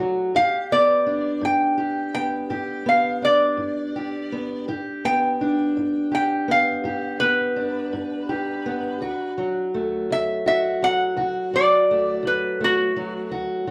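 A slow, straight 12/8 pulse at 56 BPM carries this swaggering, gritty acoustic country blues fragment, where a dark, boxy parlour steel-string guitar, fingerpicked up front, accompanies a nasal, metallic lap resonator guitar played with slide and fingerpicks that carries the melody from 0.4 seconds, the two moving from G to D at 9.0 seconds inside a wet studio reverb heard from further back in the room.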